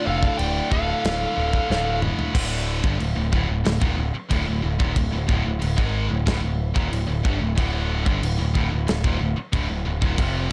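A dark-toned distorted lead guitar melody with digital delay and a brighter second lead line open this dark, aggressive heavy metal excerpt in D phrygian at 92 BPM, over a picked riff doubled by a high-gain distorted guitar and a scooped high-gain guitar; the leads stop at 2.0 seconds, during a drum fill from 1.7 seconds, leaving the riffing guitars, an up-front growling overdriven electric bass and an acoustic studio drum kit with a punchy kick, medium-tuned snare, toms and sparkling crash cymbals, all in a dry, dark production.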